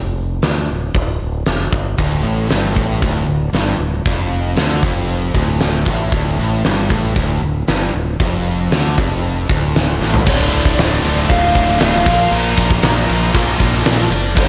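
A huge arena drum kit sits up front in this driving, menacing hard rock piece in D minor at 116 BPM, with a fat snare, punchy kick, crashes, hi-hat, ride and toms. A growling, fingered electric bass opens the piece, bright and punchy with overdrive on its tone. At 2.0 seconds two picked rhythm guitars take up the riff: one bright and overdriven with a slapback echo, the other a sludgy, warm part tucked in the background. A drum fill at 10.0 seconds leads into a new section at 10.3 seconds. Here a dark, lo-fi lead guitar through a small cranked amp carries a high melody, colored by slapback and tape echo, and a heavy, double-tracked high-gain guitar adds a distorted riff behind it. The harmony holds on Dm before moving to Bb, and the whole mix sits in a big arena sound with lush hall reverb and a touch of small-room ambience.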